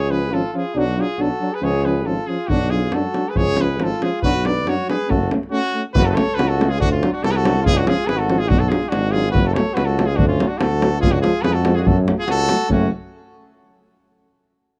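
Dry and close, this recording has the feel of a small 1970s studio, with only a touch of room reverb around the players. It is a fiery yet bittersweet stretch of Balkan brass band music, cut from a longer piece, moving at 141 BPM in a brisk 2/4 with a light swing on the sixteenths and set in F# harmonic minor. A bright trumpet carries the melody while a mellow flugelhorn with light vibrato plays a second line beneath it, and both sit back at a distance with a roomy sound. A tuba with a soft attack anchors the bass. A euphonium with vibrato and a close-miked trombone fill in the accompaniment in the background, all played in a classical style. A deep, vintage-sounding davul joins at 2.5 seconds, and at 6.0 seconds the tune moves into a new section where D major chords brighten the minor harmony before it settles back on F# minor.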